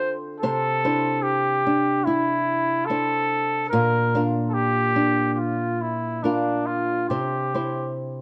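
Haunting and mournful, this short excerpt of a Celtic slow air drifts in a rubato 4/4 at around 69-76 BPM, with a mellow, vintage-toned trumpet singing the classical-style melody up front from the opening to 7.9 seconds. A dark, fingerpicked acoustic flamenco guitar sits close beside it, supporting the line through a Cadd9, Bb and C progression. Moderate spring reverb and a warm, shadowy production give the fragment its dusky, lamenting atmosphere.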